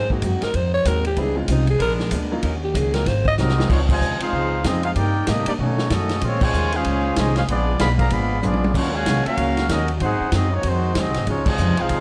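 This swinging, brassy big band excerpt opens mid-phrase on a growling alto saxophone solo, raspy and gritty with scooped notes and subtone, sitting up front over a bright saxophone section holding soft-attack chords in the background. Beneath them a woody pizzicato upright bass anchors the low end, a very quiet boxy guitar is picked in swing style, and a clear baby grand piano with short sustain plays faintly behind. A vintage drum kit with a tight kick, medium-tuned snare and dark cymbals keeps the swing going and plays a fill at 3.4 seconds, as a dark, smooth-topped trumpet section takes over the melody with soft attacks. A close-miked trombone section with light vibrato carries a second line under the trumpets, and the full band hits accents as the rich jazz harmony moves along. A second drum fill arrives at 8.4 seconds, and the warm mix with light reverb keeps the horns brassy and the rhythm section natural.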